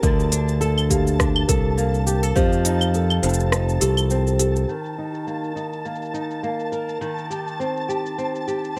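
Autumnal and delicate, this folktronica excerpt at 103 BPM with a gentle 16th-note swing centres on an up-front, fingerpicked flamenco guitar whose arpeggios carry audible finger squeak through low-pass filtering and digital delay, joined by a bright, growly fingered electric bass with tube saturation, a deep electronic kick that stops at 2.5 s, an organic electronic kit of claves, smooth hats, rim click and shaker, a sweet, bell-like celesta line soaked in tape echo in the background until 4.7 s, and a grainy, flickering granular texture sustained on a high A, before a filter sweep on the guitar marks the shift into a second section from 4.7 s over chords moving from Gmadd9/D and F7 to Eb5 and Cm7/Eb, all in a light reverb.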